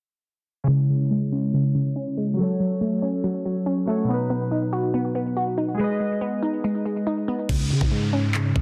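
Tense and cold, this short cut from a longer drill track opens with warbling, lo-fi synth keys carrying a nostalgic chord progression under a glassy, crystalline wavetable pluck that spins detuned arpeggios through chorus and digital delay, both parts moving through a filter sweep up front in the half-time feel. At 7.5 seconds the keys stop and the beat drops: a growling, buzzy 808-style bass and an electronic drill kit with a knocking kick, handclaps and crash arrive alongside an electronic downlifter, with the hi-hats muted. The mix is dense and heavily limited with a light reverb.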